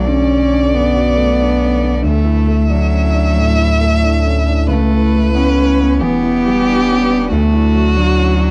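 A bowed solo violin carries a focused, vibrato-rich melody over a close, even cello line touched by analog delay, while a vintage grand piano, a deep sine sub bass and a very quiet, warbling, detuned pad all sound together from the first second of this short neoclassical fragment. The feel is rubato at 91 BPM in 4/4 and D major, moving hopefully through Bm7, Dadd9, Aadd9/C# and Em7 before settling back on Dadd9 around 7.3 seconds, with the sub bass sitting up front and the pad adding a nostalgic lo-fi haze. Light reverb and small-room ambience frame this intimate home recording on cassette.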